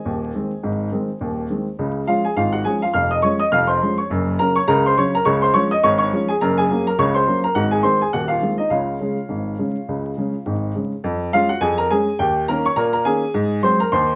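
A solo baby grand piano, open and up front with long sustain, plays playful, lively ragtime in Db major at 104 BPM in 2/4 with a light sixteenth-note swing, moving through Ab, Db and Gb chords before turning to a new passage at 11.0 seconds over Db/F, Eb7 and Ab7, all set in a short, wet studio reverb with a live-room feel and a haze of vinyl crackle in this brief cut from a longer piece.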